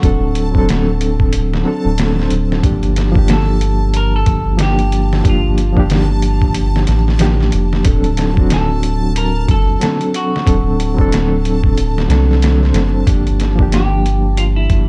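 A pitched-down, muffled sampler-style drum kit sits up front with a thumpy kick, medium-tuned snare and hi-hat, overdriven and compressed, setting a melancholic, cinematic trip hop groove at 92 BPM with a swung 16th feel, cut from a longer piece. A deep, round dub sub bass with tube saturation and a reedy, clean electric piano carrying medium tremolo, 12-bit sampler grit and tape echo fill out the D7 to Gm7 harmony. A clean, picked semi-hollow guitar plays the melody through tape echo, while a reversed, granular, detuned texture floats dreamily in the background across the dark production.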